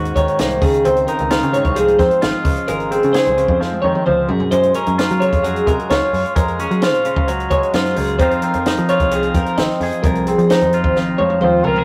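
A bright, clean twelve-string electric guitar carries the arpeggios in this wistful, intricate stretch of math rock and midwest emo, cut from a longer piece and moving at 131 BPM in a straight 4/4 in Db major. Beneath it, a scooped, twangy electric guitar sits up front as accompaniment, while a dark, round, foam-muted picked electric bass anchors the low end. A compact cocktail drum kit, dry and natural with a high-tuned snare and punchy kick, drives the groove across hi-hat, kick, snare and toms, adding fills around 3.6 seconds and again at the close. The harmony drifts through lush extended chords, opening on Ab9sus4 before settling into Dbmaj9 and moving to Gbmaj9. Only at 11.4 seconds does a warm trumpet slip in, close-miked with light vibrato, for a brief pop-style melodic phrase, all framed by moderate studio reverb and the rough feel of a rehearsal-room recording.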